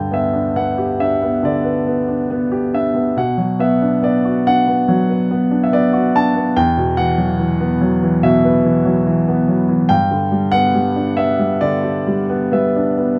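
Close, detailed microphones and a light reverb give this 13.2-second passage an intimate, natural sound, with the warm baby grand piano sitting up front. It is a tender, peaceful piece of lyrical classical solo piano in G major, played with rubato at around 70 BPM in 4/4 and spanning E2 to A5. The harmony moves gently from G through B minor and E suspended second before settling back on G near 9.9 seconds.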